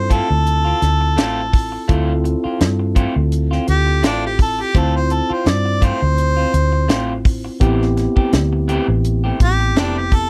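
An overdriven harmonica carries the melody up front in this brooding, smoky soul blues fragment, its warm, jazz-style solo line moving through scooped notes between D4 and D5. Beneath it, a clean, direct tine electric piano supplies the accompaniment, while a vintage fingered electric bass sits up front with a dark, round, foam-muted tone. An electric guitar through a small old amp adds twangy, slightly broken-up picked stabs with a lo-fi edge, and an acoustic funk kit with a high-tuned snare and tight kick drives the groove from close range. The tempo is an unhurried 84 BPM in 4/4, with a straight-eighth feel and a light 16th-note swing. Harmony rests on Dm7 before moving to Am7 at 7.6 seconds. The dry, close 1970s-style studio sound keeps every part intimate across the roughly 10.3 seconds heard.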